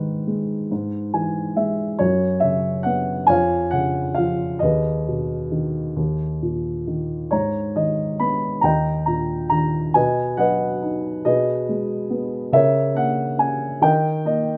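Wistful and melancholic, this short classical passage for solo piano unfolds in G# minor at a slow 46 BPM in 6/8, counted in dotted quarters, with a freely breathing rubato feel. A single baby grand carries everything from 0.0 to 14.6 seconds, its tone dark, mellow and slightly boxy, with a short sustain that keeps each note close and intimate. The instrument sits up front in a light reverb, ranging from D#2 up to B5. A brief fill between 0.7 and 2.0 seconds adds a touch of ornament early on. The harmony moves from G#m through F#sus4, G#madd9, B and C#m6 before coming to rest on D#, leaving the phrase hanging as this excerpt is cut from a longer piece.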